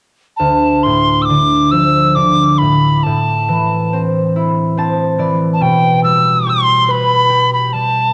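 In a rubato 6/8 at 46 BPM, this haunting, longing Celtic slow air excerpt sets a pure, mellow tin whistle, expressive with vibrato and a soft attack, over bright, ringing fingerpicked concert harp from 0.4 to 8.1 seconds, the harp slipping in a fill at 4.3 seconds as the chords move from Dm to Am to A7sus2/B, both parts colored by cassette tape in a home-recorded studio ambience.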